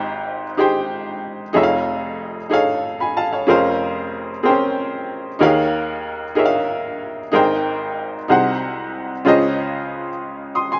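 A bright upright piano plays alone in this jubilant, hopeful gospel fragment, moving through rich extended chords in a straight 6/8 across its full range from deep bass to high treble. Its woody, brilliant tone has a short sustain and sits up front with a slapback echo. The sound is dry and open, as if played outdoors, and the clip is cut from a longer piece, running just under 11 seconds.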